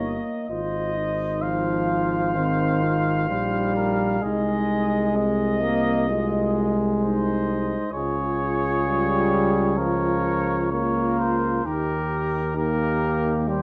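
A slow, straight 4/4 pulse at 65 BPM carries this 13.6-second passage, lifted from a longer classical work for brass quintet in Ab major, with a noble, warm mood. The first trumpet sings the melody between Bb4 and F5 with light vibrato, sitting up front yet with a distant, roomy glow, while a mellow second trumpet traces a smooth-topped second line beneath it. A soft-attacked French horn fills in the accompaniment from further back in the blend, and a close-miked trombone gives the inner harmony a present, warm core. The bass trombone anchors everything from G1 to Eb2 with a mellow, smooth-topped tone and light vibrato. The harmony opens on Eb7/G, settles onto Ab, moves through Db and Bbm/Db, and comes to rest on Eb at 11.7 seconds, all heard in a recital hall with a moderate, gently lingering reverb.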